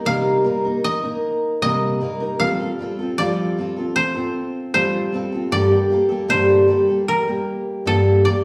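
Intimate and reflective, this short excerpt of acoustic folk moves at an unhurried 77 BPM in 4/4 with a straight feel, set in C dorian. Up front, a dry, woody koto played with fingerpicks carries the melody over a full-bodied picked steel-string acoustic guitar accompaniment, both sounding together throughout. The harmony moves from Cm7 to Fadd9 at 2.4 seconds and Gmadd9 at 5.5 seconds, and the guitar takes on an auditorium character within the reverberant space of a church or concert hall.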